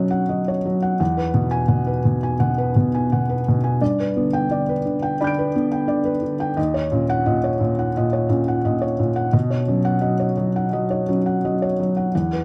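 Intimate and hopeful, this neoclassical minimalist piano piece unfolds in a loose, rubato 4/4. A single felt-muted upright piano carries everything alone for the full 12.4 seconds, ranging from deep bass notes up into the high treble. Its tone is soft, dark and slightly boxy, and the audible action noise adds a close, personal texture. Close, detailed microphones keep the instrument up front, with only light reverb around it. The harmony moves gently from Badd9 through Eadd9, G and D#m7 before settling back on Badd9, and the passage ends there as a fragment cut from a longer work.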